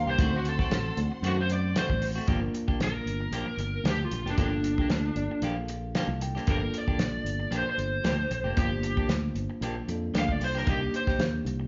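A dark, overdriven lead guitar from a small cranked amp sits up front in this brooding, soulful straight-eighth soul blues excerpt in G minor at 114 BPM, soloing over the opening 2.3 seconds while distant, lush bowed strings hold sustained chords in the background before dropping out. A round, punchy fingered bass and a muffled, lo-fi soul drum kit with a fat snare and tight kick anchor the groove, as a twangy, slightly broken-up electric guitar plays stabs and a bell-like, clean tine electric piano accompanies, adding a fill at 4.9 seconds. The band sounds like it is playing live in one room, with a moderate large studio reverb and a rolled-off, dusky top end, moving through chords from D7b9 to Gm7 and Cm7.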